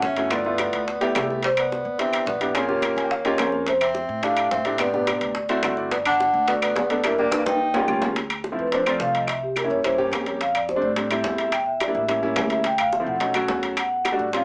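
Driving and fiery, this excerpt of Afro-Cuban jazz puts a mellow, dark vibraphone played with soft mallets on the melody, shadowed by a breathy, close-miked tenor saxophone with vibrato until 8.0 seconds, while an intimate, up-front concert grand piano with deep bass and audible action noise comps underneath and drops in short fills. A woody, thumpy pizzicato upright bass on gut strings anchors the bottom, and the percussion pairs round, low-tuned bongos struck with hard hands, ringing, saturated metal-shell timbales and dry claves set back in the mix. After a drum fill, the vibraphone takes a solo from 8.2 seconds over shifting extended jazz harmony, all heard through a modest studio ambience and a small-speaker sound.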